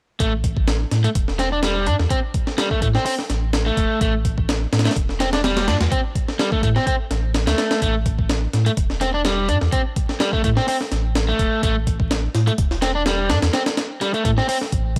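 A dry, gritty hardware recording with vinyl crackle and a digital ambience carries this funky, energetic breakbeat excerpt with a slight swing. A sampler-style breakbeat kit, compressed and pitched up, with a thumpy kick, a high-tuned snare, hi-hat and a tape-warm tone, sits up front beside a deep, thick, mellow sub bass with tube saturation. A bright, overdriven electric guitar plays a picked, compressed riff, colored by tube saturation, vintage 12-bit sampler crunch and tape echo, until it stops at 14.6 seconds.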